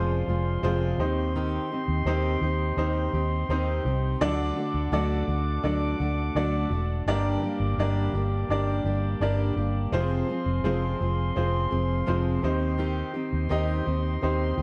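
Pop in C minor at 84 BPM in a straight 4/4, this short excerpt cut from a longer piece feels dramatic and driving. A vintage muted fingered electric bass sits up front with a dark, round, foam-muted tone, anchoring the low end throughout. A woody, boxy upright piano, also up front, plays accompaniment while a full-bodied fingerpicked steel-string dreadnought guitar carries a riff. Above them, a clear woodwind section holds sustained chords with light vibrato in a classical style. The harmony moves from Fm through Cm/Eb, D and Gm before returning to Fm and Cm/Eb, and a moderate scoring stage reverb wraps the dark production in a sense of space.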